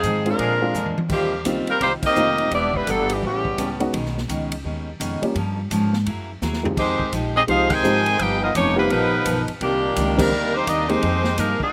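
A bright, up-front saxophone section with vibrato carries the melody in this joyful, swinging big-band jazz excerpt at 169 BPM in E-flat major, backed by a clear, tight trombone section on a second line; both fall silent at 3.8 seconds and return at 6.8 seconds. A warm, distant trumpet section adds a single brief stab at 0.4 seconds, while a dark, mellow baby grand piano with audible action noise and a full-bodied picked steel-string acoustic guitar fill out the accompaniment. A woody pizzicato upright bass and an airy, polished drum kit with a punchy kick keep the swing moving through drum fills and band accents, all in a dry outdoor recording with slapback echo on the saxophones, piano and trumpets.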